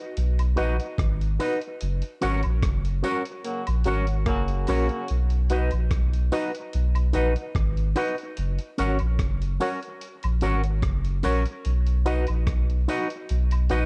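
A straight 4/4 roots reggae groove sets a sunny, uplifting mood: a gritty, compressed sampler-style kit with a thumpy kick, hi-hat and rim click sits up front beside a deep, round sub bass, while close, dry woodblock and tambourine tick along in the background. A dark, clean electric guitar through an envelope filter adds a warbly drift and tape echo, and a bright, barky reed electric piano jabs out lightly overdriven stabs with tremolo. Between 3.4 and 5.1 seconds, during a band accent, a mellow, distant horn section joins with light vibrato and octave doubling, all captured on cassette with little reverb in this short cut from a longer piece.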